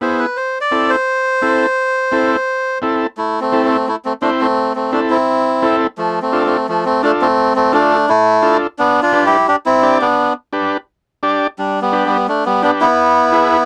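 Close, dry and detailed, this driving, passionate Latin fragment at 171 BPM in A minor sets a reedy, nasal melodica melody up front over a buzzy, overdriven combo organ with light vibrato, the chords moving from Am through Dm and G to E.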